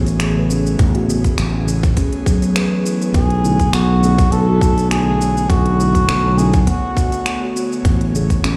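This mystical, hypnotic slice of organic downtempo opens with an airy, breathy pad holding chords through chorus and sidechain pumping, while a steel tongue drum, struck with firm rubber mallets, rings out round, pure arpeggios with delay in the background. A growly, punchy fretless electric bass sits up front with tube saturation and its own pumping, and a lightly swung electronic kit of finger snaps, crisp hi-hat and shaker joins almost at once, re-recorded in a large room with a tape-tinged color. Very quiet, dark felt-like synth keys add muted, intimate accompaniment, and a tight electronic kick lands up front from 0.8 seconds. At 3.1 seconds a cup-muted trumpet takes a mellow, veiled solo melody in a classical style, carried by delay as the harmony moves from Amaj9 to Bm11 and back. Light digital ambience blends with the echo of a stone room, as if the track were played through a big sound system in a bare hall.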